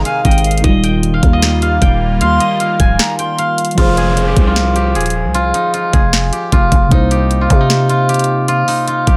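Set in a digital ambience, this brooding, dark hip hop and trap excerpt in F minor runs at 153 BPM with a half-time feel: a silvery, ringing steel-string zither played with fingerpicks carries the melody up front through a low-pass filter over muted, intimate felt-like synth keys with chorus, a growling, buzzy 808-style bass and a trap kit of knocking kick, sharp snare and bright hats entering at 0.1 seconds, while a pure, vibrato-touched silver concert flute with tape echo and a detuned, evolving sawtooth pad in the background sound only until 3.7 seconds, before a downlifter in the background arrives at 3.8 seconds.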